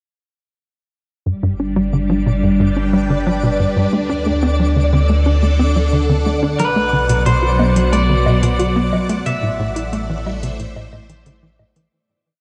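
Ambient, sequencer-driven space music at 90 BPM in A dorian, hypnotic and cosmic, opening at 1.3 s with swirling phased string-machine chords, a deep, round sine sub bass and a tight, punchy sequencer bass whose 7-step loop drifts against the bar under a filter sweep. A twinkling granular texture holds a sparkling high note, and at 6.6 s a bright, slightly broken-up lead guitar enters with twangy call phrases alongside a light pulse of metallic electronic hi-hat and low woodblock, over a G, D, Bm, Am progression. The whole piece sits in a huge ambient reverb with a cassette-tape character and fades out from 8.4 s.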